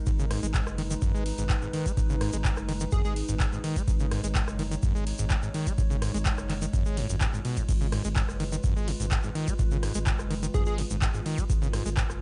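Acid house at 126 BPM in 4/4, raw and trippy, sitting on an A-flat minor chord in a dry, gritty cassette recording cut from a longer piece. A deep electronic kick and a booming analog drum machine with metallic hats, handclaps, rim clicks, ride and crash, both re-recorded in a large room, drive alongside a grainy, close egg shaker. A squelchy, resonant sawtooth acid bass riff with overdrive and analog delay, a thick saturated sine sub bass, and a warbling, nostalgic pad with chorus and phaser all pump against the kick, while a punchy, detuned unison lead flashes a single delayed A-flat note at 2.9 and 10.5 seconds.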